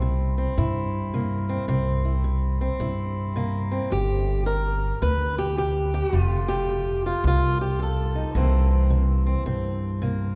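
A boxy, fingerpicked parlour steel-string acoustic guitar carries the melody up front in this gritty, laid-back acoustic country blues excerpt, swinging at 108 BPM in 4/4 in C mixolydian. A woody pizzicato upright bass sits just as close beneath it throughout, as the harmony moves from C7 to G5 at 3.9 seconds, then to F and back to C7. A long, wet church reverb surrounds the pair, giving the recording the resonance of a large hall.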